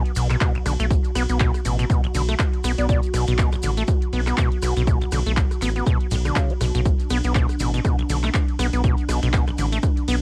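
A cassette-dubbed home recording with light reverb opens on a raw, driving acid house groove at 121 BPM in B minor, swung on the sixteenths and resting on a single Bm7 chord throughout this short cut from a longer piece. An overdriven, punchy electronic kick sits up front beside a deep, round analog bass, while a squelchy, resonant sawtooth acid bass riff with overdrive, chorus and delay pumps against the kick alongside a moody, detuned analog pad in the background. An electro drum machine adds metallic hats, ride, handclaps and rim clicks, grainy maracas sit close and dry, and a mellow, hollow jazz flute note on D5 drifts by through cassette tape and analog delay at 2.8 seconds.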